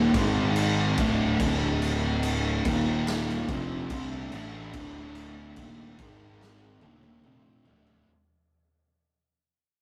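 A straight 4/4 pulse at 72 BPM drives this brooding, heavy stoner and doom metal fragment. The raw garage drum kit sits up front with a boomy kick, medium-tuned snare, toms and crash in a bright, pumping stone room, sounding gritty and saturated, and breaks into a drum fill at 6.4 s. A dark, double-tracked fuzz guitar picks the riff over chords moving through G#5, D5, Eb5 and Dm, with a round, overdriven fingered bass beneath it, while a very quiet, flute-like tonewheel organ enters at 1.4 s with sustained chords through a slow rotary speaker, chorus vibrato and key click, all within a rough rehearsal-room sound with light reverb that fades out across its 8.1 seconds.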